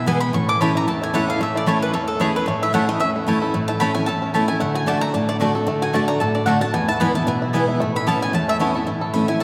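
Swung eighths drive this joyful bluegrass excerpt along at 225 BPM in 4/4, in A major, as a round, double-strung mandolin takes a solo over a chord run from A through D and E to Aadd9. A bright, full-bodied dreadnought guitar sits up front with picked accompaniment, a mellow yet twangy fingerpicked banjo adds percussive arpeggios from 0.3 seconds, and a second, woody mandolin punches in stabs from the background. A vast cathedral reverb with a long, echoing tail surrounds the whole band.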